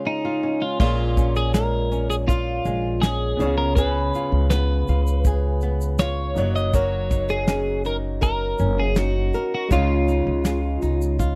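Acoustic pop with a wistful, tender mood, cut from a longer piece: a fingerpicked flamenco guitar opens at the start and a bright, twangy, compressed twelve-string electric guitar carries the melody from 0.1 seconds, then at 0.8 seconds a woody, thumpy pizzicato upright bass, a soft brush drum kit with punchy kick, snare, shaker and crash, and a clear upright piano sitting in the background join in, all captured in a dry, close 1970s-style small-room recording.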